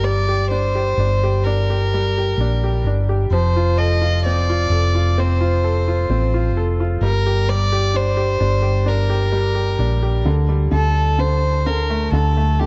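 A slow pop ballad in G minor at 65 BPM, this short excerpt carries an emotional, longing mood as a single bowed violin sings the melody up front, its tone soft-edged, pure and floating. Beneath it a bright upright piano adds woody, polished accompaniment with long sustain, while a hollow-body short-scale electric bass, played fingered, sits loudest with a round, punchy, amped sound. The chords move from Gm to F, back to Gm and onto Dsus4 at 10.3 seconds, all in a small room with light reverb, a dark, mellow production that rolls off the highs, and a faint mains hum.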